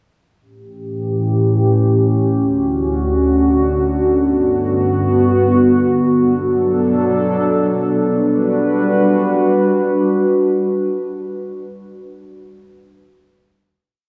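Floating and dreamy, this complete atmospheric cloud-rap hip hop piece drifts in free time in G lydian, tuned to A4 = 441 Hz, with a lone warbling, detuned, lo-fi tape-like pad entering at 0.9 s, its slow-attack sustained tones carrying chorus and a low-pass filter sweep through a breakdown of A7, Dmaj7, Gmaj7 and Bm7 before settling on a final Gmaj7 at 8.0 s, all bathed in a lush hall reverb.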